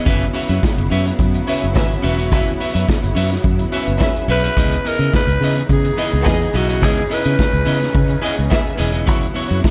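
A straight, driving disco groove opens this short glamorous section of a longer track, set by a vintage acoustic drum kit sitting up front with a boomy kick, a medium-tuned snare, hi-hat and a pumping small-room sound with a rolled-off top. Beneath it, a fingered electric bass gives a dark, round, foam-muted low end. A clean, picked electric guitar plays accompaniment alongside a clear symphonic string section holding lush bowed chords. From 1.5 seconds a close studio violin section adds a smooth second line with vibrato and tape echo. At 4.3 seconds a breathy, raspy alto saxophone steps up front with a short pop-style melody, gritty yet smooth on top, over harmony moving between F#7sus4 and C#m9. The production is dark and warm, with light reverb and a small-room ambience.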